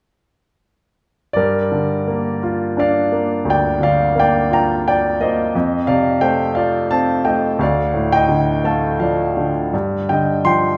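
In a rubato 3/4 at about 86 BPM, this lyrical solo piano piece in G minor unfolds with a brooding, bittersweet mood. It is a short passage cut from a longer classical work, with a clear grand piano entering at 1.3 seconds and playing alone until 10.8 seconds. The piano sits up front and spans a range from D2 to C6. Its harmony moves from Gm7 through F and Dm before settling on a thirdless G7 chord near 9.7 seconds. A wet recital hall reverb surrounds the instrument, lending the playing a lingering, spacious glow.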